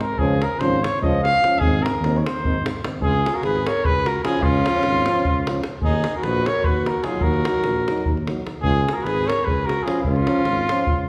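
Balkan brass band folk in a festive, exuberant 7/8 at 299 BPM (eighths), this cut from a longer piece moves from Ab major into Db mixolydian at 3.0 s over Db, Ab, Ebm and Db chords. A warm, roomy cornet with light vibrato leads the melody and takes a solo through the opening 3.0 s, backed by a tight, close davul, a mellow tuba bass, and a soft-attack euphonium and distant trombone sitting in the background. A clear alto saxophone joins with a second line at 3.0 s, and the whole band rings in a wet recital-hall reverb.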